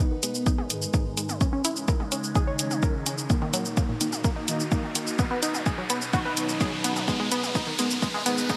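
Dark and cinematic, this melodic techno build-up in G# minor at 127 BPM pairs a thick, detuned unison lead and a nasal, tight sequenced synth arpeggio with an evolving, phased wavetable pad in the background, fat analog brass stabs entering at 0.7 seconds, a punchy overdriven kick, a bright-hatted house kit with shaker and toms, and an electronic riser from 1.1 seconds, all under sidechain pumping on most parts, filter sweeps, a drum fill at 7.1 seconds, and a lush hall reverb in a bright 1980s-style digital sound.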